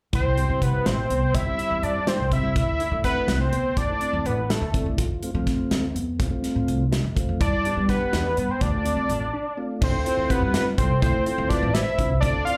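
Progressive instrumental band music in 5/8 at 248 BPM (eighths), set in D dorian with a straight, intricate and driving feel, cut from a longer piece. An up-front synth lead with an added fifth carries the melody, its hollow, bold sawtooth tone detuned and sustained with chorus, vibrato and slapback echo, pausing briefly before returning at 7.4 seconds. Beneath it, a growly, woody upright bass is played pizzicato, while a punchy acoustic drum kit with bright cymbals and a medium-tuned snare drives the rhythm from the front. A mellow tine electric piano plays clean arpeggios in the background, and a soft, flute-like tonewheel organ with key click and slow rotary speaker fills in the accompaniment, both touched by slapback echo. After a short break, a ringing, metallic vibraphone with the motor off enters at 9.8 seconds as a second line with echo and delay, as the harmony moves from C through Dsus2, F, G and Dm to a closing Dm9, all heard as a live gig through the venue's PA with light club reverb.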